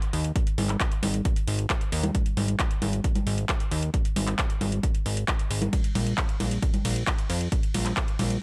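A straight 4/4 pulse drives this soaring, euphoric uplifting trance fragment, where an up-front electronic drum kit of congas, handclaps, metallic hi-hats and ride cymbal opens at 0.0 seconds, a funky, sidechain-pumped analog bass with a sawtooth-and-square, ring-modulated filter pluck follows at 0.1 seconds, and a punchy layered electronic kick lands at 0.4 seconds, all set in a dry, close mix.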